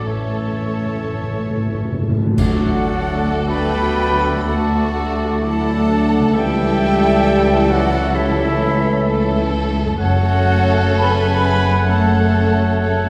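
Classical slow romantic movement for symphony orchestra in D major, lyrical and warm, moving with rubato at around 50-68 BPM. Expressive, lush violins carry the melody over a second violin line, an airy flute section, a present oboe and a very quiet clarinet, while focused violas, a smooth-topped bassoon, mellow French horns, a bright ringing harp, and rich cellos and double basses fill out the harmony and bass. Round soft-mallet timpani open the passage before a full-orchestra accent at 2.4 s brings in dark cymbals with concert bass drum, a very quiet trombone section and mellow trumpet stabs, all heard from further back in a recital hall with a lingering reverb.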